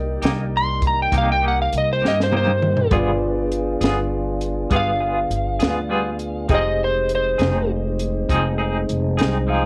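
A dark, slightly broken-up electric slide guitar played with fingerpicks sits up front carrying the melody from 0.6 to 7.7 seconds in this smoky, soulful slow blues fragment in C minor at 67 BPM in 12/8, moving over Cm7, G7b9 and Fm7, while a woody pizzicato upright bass with steel strings, a compact cocktail drum kit with punchy kick, high-tuned snare and a fill at 2.0 seconds, a twangy clean electric guitar with tremolo, a tonewheel organ holding clear sustained chords with key click through a slow rotary speaker, and a background upright piano with plate reverb that adds a short closing fill all sit under light reverb and the warbly pitch drift of worn cassette tape.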